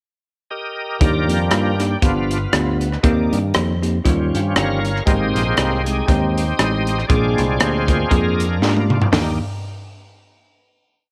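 A shouting, lightly overdriven tonewheel organ opens this short, hopeful and reverent uptempo gospel piece with a swung pickup, its slow rotary speaker, chorus vibrato and key click giving up-front held chords in drop-2 voicing. From 1.0 s the organ takes a solo over a bell-like tine electric piano playing close-voiced quarter-note chords, a growly fingered bass walking and running with slides and chromatic approach notes, and a punchy acoustic drum kit with a high-tuned snare driving a two-beat praise groove in a small, pumping room. A drum fill at 8.6 s leads into a final Ebmaj7 chord at 9.1 s, all set in light reverb.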